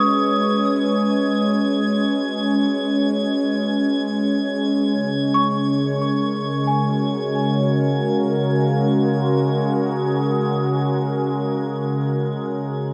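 Floating in free time, this serene, melancholic ambient passage is cut from a longer piece and drifts from a C#m7 chord to F#/C# at 4.9 seconds. An up-front analog pad of detuned sawtooth and triangle tones carries the sustained chords with a slow attack, a smooth, warbling vintage character, subtle chorus, shimmer reverb and a filter sweep. Above it, a bright, bell-like celesta traces delicate arpeggios through tape echo and shimmer reverb, while a soft, pure violin section bowed sul tasto holds a single high floating note that fades out. At 6.4 seconds, a resonant drone joins, blending sawtooth and sine tones whose overtones sweep and move, with chorus and its own reverb. A huge, wet reverb bathes the dark, warm production before the whole passage fades out from 9.6 seconds.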